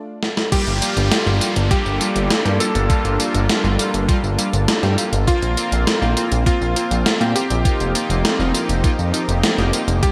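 Synthwave at 101 BPM in G minor, driving and nocturnal, cut from a longer piece. It opens on a brief stop with a drum fill at 0.2 seconds, then at 0.5 seconds a thumpy electronic kick and a gated 80s drum machine with crash, hi-hat, gated-reverb snare and tambourine drive things forward. A fat, nasal analog bass and a lush unison pad, both pumping with sidechain, move through Gm7, Bbsus2 and F7sus4 beneath glossy chorused polysynth stabs, a cutting electric grand piano melody with delay and a background downlifter, all set in plate reverb with a bright 1980s-style digital sheen.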